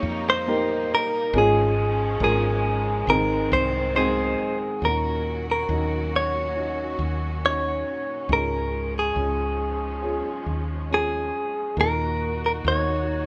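A slow, straight 4/4 pulse at 69 BPM carries this tender, heartfelt pop ballad excerpt, where a clean, compressed electric guitar, recorded direct and picked up front, sings the melody over a dark, mellow, boxy upright piano and a round, punchy fretless electric bass with a hollow-body woodiness. Behind them, a studio string section holds smooth, bowed chords with vibrato, all of it sitting in light reverb like a band playing live in one room. The harmony moves from Eb through Db/Ab to Ab before shifting at 4.8 s to a darker passage of Ebm7, Db and Ebm.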